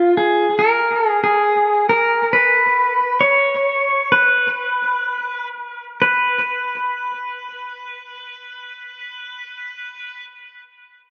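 Dream pop with a dreamy, floating mood, this short excerpt from a longer piece moves at an unhurried pace in a straight four. An electric pedal steel guitar carries the melody alone, sitting up front in a clean, twangy tone shaped by compression. It is played with fingerpicks and a slide, and its volume swells give each note a soft, blooming entry. Tape echo trails the guitar, and the whole sound floats in a wet spring reverb and digital ambience that makes for an echo-heavy mix. The tempo eases back through the opening passage up to 6.0 seconds, before a second section carries the melody on to the close at 10.2 seconds.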